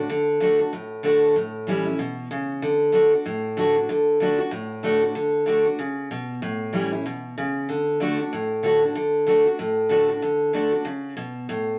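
A fast swing drives this rock piece at 190 BPM in 4/4, its eighth notes lilting with a 60% swing that gives the music a rowdy, rollicking gait. A lone picked steel-string acoustic guitar carries everything from 0.0 to 11.8 s, its bright dreadnought tone sitting up front and ranging from A2 to F#4. The harmony in D major moves between D and A7, settling on D at 7.7 s. An opening section gives way to a new passage at 9.0 s, and the piece is cut from a longer performance. A wet studio reverb surrounds the guitar, while vinyl crackle and a dulled top end lend the recording an aged, dusty character.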